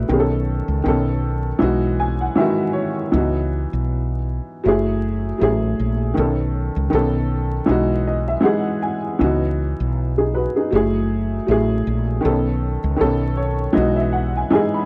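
Nostalgic and melancholic, this fragment of a lo-fi hip hop piece sways on a gentle swing, cycling through B9, Emaj9/B, C#m11 and F#m9 chords. A dark, worn upright piano carries the accompaniment up front, its slightly detuned, boxy tone and audible action noise softened by cassette tape character and a low-pass filter, while a woody, hollow-sounding fretless electric bass sits close beside it with tube saturation and a subtle chorus before dropping out at 14.4 seconds. The dry, gritty hardware recording carries light reverb and a layer of vinyl crackle.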